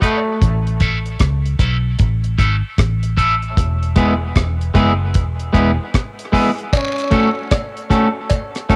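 Meditative and heavy, this dub reggae excerpt at 76 BPM in 4/4 with a 16th-note swing rides a dry, dark reggae drum kit of tight kick, hi-hat and rim click under cassette tape, a round, foam-muted fingered bass with tube saturation from 0.4 to 5.8 seconds, and a twangy, slightly broken-up electric guitar treated with spring reverb and dub echo, while a distant, scooped trombone with light vibrato calls out briefly at 0.0 and 6.8 seconds and a cowbell and jawbone-type rattle enter at 6.7 seconds as the chords move from A to E to F#m, all on a lo-fi home cassette recording opening with a filter sweep.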